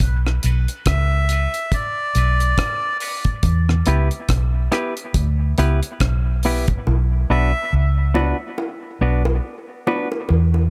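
A dark, round fingered bass and a dry, tight reggae drum kit open this meditative dub reggae excerpt at 70 BPM in B minor, alongside a quick touch of high-tuned bongos. A clean, compressed semi-hollow guitar with dub echo, a faint mellow organ with a slow rotary speaker and a very quiet piano stab fill in over Bm and Em, while a reedy, breathy melodica carries the melody through its own dub echo from 0.9 seconds. At 6.9 seconds the drums drop away and the soft-handed bongos return with echo beneath the bass in a small room.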